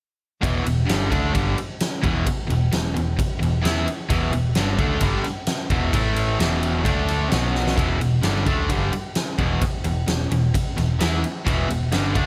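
A driving, straight 4/4 pulse at 131 BPM anchors this heavy hard rock excerpt in E minor, where a cranked stack guitar with bright overdrive and a scooped, compressed distorted electric guitar share the riff from E2 to E4, a growly, punchy picked bass holds the low end, and a huge arena drum kit with a fat snare, boomy kick and ride cymbal sits up front, with the harmony moving from Em through A5, E5, D5 and B5 before a drum fill at 7.5 seconds leads back to Em under light reverb.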